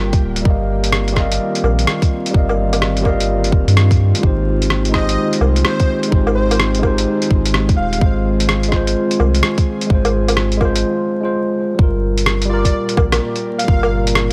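A clean tine electric piano through a combo amp plays from the start of this rainy, ghostly future garage excerpt at 127 BPM in C minor, with tape echo trailing and its filter sweeping until 11.8 seconds. A breathy, chorused pad sits in the background and a deep, round sub bass sits up front, and both pump with the piano against a tight, tape-warm kick and a muffled, pitched-down sampler kit of overdriven hi-hat, rim click and woodblock on swung 16ths, over the chords Cm11/G, Fm9/Ab, Ab6 and Gm7. A soft, detuned lead with vibrato floats in at 4.9 seconds and returns after a short break, all wrapped in a gritty hardware sound with transformer saturation, vinyl crackle and light reverb.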